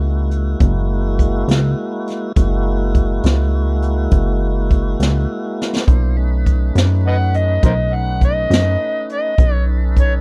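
A 12/8 slow blues at 68 beats per minute, this gritty, rollicking excerpt in F# mixolydian sits on a punchy, funky analog bass with a fast-attack filter pluck and a boomy brushed drum kit whose hi-hat, kick and medium-tuned snare sound roomy and rolled-off at the top. A lightly overdriven tonewheel organ holds full sustained chords through a slow rotary speaker, moving from F#9 to B9 at 5.9 seconds. The drums drop in a fill at 5.6 seconds. At 7.1 seconds an amplified, overdriven harmonica takes the solo, its jazz-style line marked by vibrato, scooped notes and tongue slaps. The harmonica, bass and drums sit up front in a studio ambience, with the organ tucked lower in the mix.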